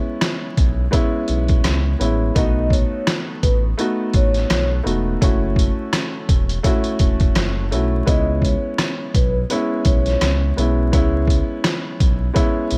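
A dark, woody upright piano with audible action noise opens this reflective, gritty boom-bap hip-hop fragment in C# minor at 84 BPM with swung 16ths, soon joined by a compressed, pitched-down sampler-style drum kit with a thumpy kick and a smooth sawtooth synth bass gliding on portamento, while from 2.4 to 10.4 seconds a soft-mallet vibraphone carries a ringing, airy melody with slow motor vibrato and slapback echo, set against vinyl crackle and small room ambience as the chords move from C#m7 through B7 and F#m7 and back.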